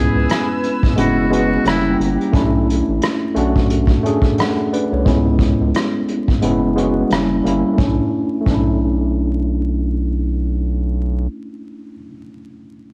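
A muted trumpet opens this reflective, melancholic lo-fi hip hop excerpt, its breathy, buzzy, whispered line heard only in the opening two seconds over a worn, slightly out-of-tune tine electric piano, a lush, warbling detuned pad and a round, deep analog bass. The brushed drum kit arrives at 0.3 s with a tight kick, hi-hat and rim click, its rolled-off top and pumping small-room character sitting up front with a relaxed swing. The pad drops out after the first moments, leaving the lightly overdriven electric piano to carry the harmony through a filter sweep during the middle passage. The mellow, sustained bass holds the low end, with jazzy minor and suspended chords cycling beneath. Cassette tape coloring, vinyl crackle and a small room ambience give the whole piece an intimate, home-recorded feel.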